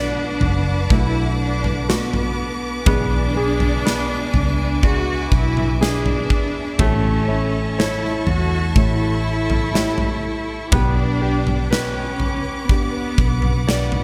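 A slow, melancholic pop ballad at 61 BPM in a straight 4/4 opens with a dark chamber cello section carrying a second line, its bowed, sul tasto tone soft in attack and intimate with vibrato and a digital delay. Around it from the first moment sit a clear, polished concert grand piano with deep bass as accompaniment, a lush, woody studio string section holding sustained chords with vibrato, and a small, thumb-plucked nylon-string guitar playing arpeggios in the background. A vintage muted fingered electric bass, round, foam-muted and amped, anchors the low end. At 0.4 seconds a huge arena drum kit enters with a punchy kick, a medium-tuned snare and toms, ringing in a hall sound and standing as the loudest part. The harmony moves through Bm7, E7/B, A7 and G/B, giving the fragment a longing feel, with the whole tuned slightly low to A4 = 436 Hz and set in a small room ambience.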